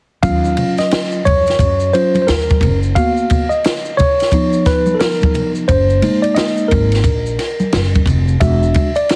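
Cool and mellow, this swung jazz-hop excerpt features a worn, slightly out-of-tune tine electric piano soloing up front from 0.2 to 9.2 seconds over chords moving from Ebm7 to E9, backed by a woody pizzicato upright bass, a dry compact cocktail drum kit with dark cymbals, a high-tuned snare and a punchy kick, and band-limited maracas and congas tucked in the background, the whole mix set in light small-room reverb with a heavily compressed radio sound and vinyl crackle.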